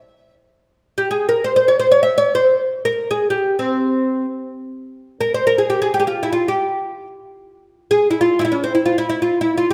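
A solo oud opens this short cut from a longer Persian modal piece, playing in free time in dastgah homayun on C. Its tone is bright and woody, plucked with a plectrum, and the doubled strings and fretless neck give each note a rich body. The oud sits up front and moves between C4 and E5, carrying a festive, warm mood on its own. The passage falls into two statements of the same section, the second starting at 4.9 s and running to the end at 9.7 s. A lush recital hall reverb with a 1.6 s decay surrounds the instrument and lends it a spacious glow.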